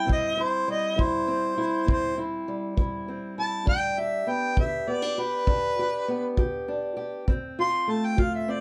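The recording has a dusky, intimate studio sound with a moderate room ambience that gives the instruments a little air. This short excerpt of acoustic country blues moves at 67 BPM in a straight 12/8, with a rollicking yet gritty mood in C major. A mellow harmonica carries the jazz-inflected melody up front, its roomy tone coloured by light vibrato and scooped notes. Beneath it, a fingerpicked steel-string parlour guitar gives a boxy accompaniment over the chords C, G and F. A tight acoustic kick drum, played with brushes in a small-room setting, sounds from 0.1 seconds to 8.3 seconds.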